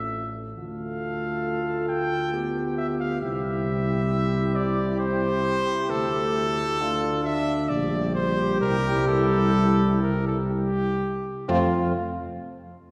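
In a straight three-beat metre, this noble, stately classical brass quintet passage, cut from a longer piece and heard from further back in a church's lingering reverb, sets a smooth-topped trumpet melody up front over a soft-attacked flugelhorn second line with light vibrato, a warm French horn and dark, background trombone accompaniment, and a mellow, up-front tuba bass, all five playing throughout as the pace slows from 4.6 to 11.5 seconds into a settling F chord.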